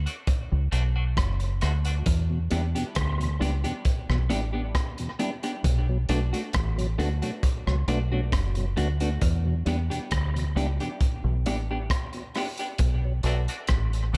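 Heavy and meditative, this dub reggae excerpt moves at 67 BPM in B minor, with a deep, round fingered electric bass sitting up front and a crunchy, gritty breakbeat kit of tight kick, hi-hat and rim click beside it as the harmony shifts between Bm7 and Em7. A clean, compressed electric guitar and a fat, lightly overdriven tonewheel organ with chorus vibrato, key click and slow rotary speaker fill in behind, both filtered and thrown into dub echo, while a filter sweep runs from 9.2 seconds. At 13.2 seconds a worn, woody, slightly detuned upright piano adds a few echoing stabs in the background, all within a small room ambience.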